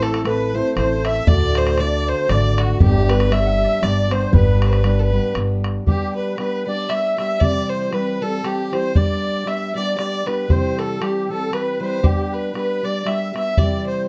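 A swung three-four lilt drives this rollicking, cheerful Celtic waltz, where a dark, woody solo fiddle with light vibrato and plate reverb carries the melody up front over a reedy, shimmering musette accordion second line, a boxy fingerpicked parlour guitar, a boomy, saturated bodhran and a thumpy pizzicato upright bass that stops at 5.8 s, set within a warm studio mix.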